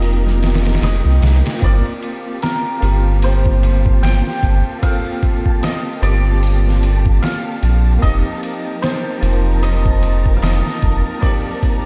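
A dusky, lightly reverberant mix with its top end rolled off gives this short cut from a longer trip hop piece a dark, melancholic haze, moving at 75 BPM in G minor with a lazy 16th-note swing. Up front, a compressed, pitched-down, muffled sampler-style drum kit thumps along with overdriven grit and a touch of studio ambience, its thumpy kick, medium-tuned snare, hi-hat and ride cymbal sitting beside a round, deep analog bass that holds the low register until it drops out at 11.0 seconds. A hammered cimbalom carries the melody with a shimmering, ringing tone and tape echo, while a bell-like tine electric piano adds clean accompaniment coloured by tremolo, 12-bit sampler crunch and echo of its own. Behind them, a muted, veiled string section bowed con sordino sustains lush chords with gentle vibrato, and a flickering, granular texture with slow attack and long release drifts faintly in the background through its chorus and built-in reverb. 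The harmony settles on F9sus4, moves to Gm11 at 1.6 seconds for most of the passage, and returns to F9sus4 at 8.0 seconds.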